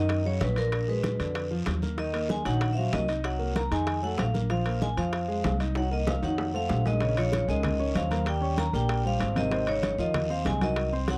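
A dry, close 1970s-style studio sound frames this sophisticated, sultry Afro-Cuban jazz fragment, where bright, ringing vibraphone carries the melody over a mellow bassoon second line in the background, an intimate baby grand piano with audible action noise comps alongside, a woody, thumpy pizzicato upright bass sits up front, and congas, tight high-tuned bongos, ringing metal-shell timbales and a raspy guiro drive the groove, with a drum fill from 5.8 to 7.0 seconds leading into the next section.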